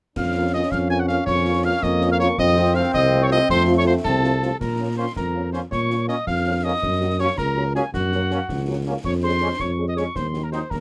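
A resolute, martial military-style march for wind band in Bb minor at 108 BPM in 6/8, cut from a longer piece, with a solo cornet carrying the melody over an airy piccolo second line with vibrato, a close-miked euphonium second line that stops at 4.3 s, tight vintage-toned trombone chords, a distant, roomy French horn section in the background, a warm, up-front tuba bass with soft attack, and concert snare, dark clash cymbals and bass drum in a small room, set in light reverb.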